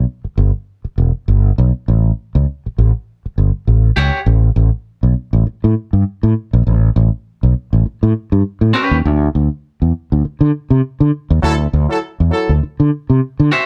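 A punchy fretless electric bass drives this playful, gritty funk excerpt at 100 BPM in 4/4 with a swung sixteenth feel, carrying the groove from the start until 13.5 seconds over chords moving from Em and A6 to A7sus2. A twangy, slightly broken-up electric guitar adds brief picked bursts, while a tight, smooth-topped horn section enters at 11.4 seconds for a band accent. The production is dark and dry, with every part placed up front.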